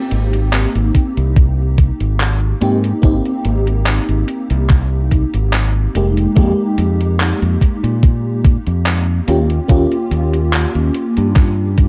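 A lush, dreamy FM electric piano layered with a soft pad opens this nostalgic, faded vaporwave excerpt, its detuned, warbling vintage tone colored by ensemble chorus and tape echo as it lays down Abmaj9 harmony before moving to Fm11 at 6.0 seconds and Eb9 at 9.3 seconds. A bright, punchy fingered electric bass sits up front from the outset, direct and firm beneath the mellow keys. A gated 80s digital drum machine adds handclaps and hi-hat with gated reverb and overdrive, while an overdriven, thumpy electronic kick drum arrives up front at 0.9 seconds. The lightly swung groove moves at an unhurried pace in four. The production is dark and dry, giving the short fragment an intimate, hazy closeness.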